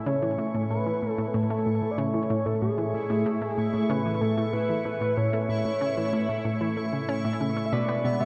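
Hypnotic and cosmic, this short excerpt of sequencer-driven ambient space music sits in a dark production bathed in a huge, wet reverb, moving from Amaj7 to Bm69 near its close. An up-front, resonant pad with a slow filter swell holds sustained chords while a round, nasal analog pluck repeats a riff through chorus and delay. A bubbling texture of random filter steps drifts quietly above, a shimmering pulse-width lead with vibrato carries the melody from 0.1 seconds, and a thumb-plucked concert harp enters at 7.7 seconds with ringing arpeggios.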